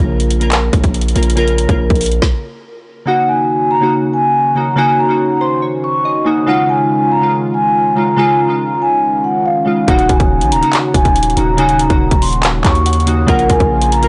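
Glassy digital keys with chorus open this melancholic, brooding half-time trap excerpt in Eb minor at 141 BPM alongside a punchy, heavy 808-style bass and an up-front trap kit with a hard-clipped kick, woody snare, metallic hats and handclaps. The bass and drums drop out at 2.2 seconds while the keys carry on. A mellow, ringing soft-mallet vibraphone melody with slow motor vibrato and a dark sawtooth pad deep in the background enter at 3.1 seconds, and the bass and drums crash back in at 9.9 seconds over a blown-out, overdriven mix with little reverb.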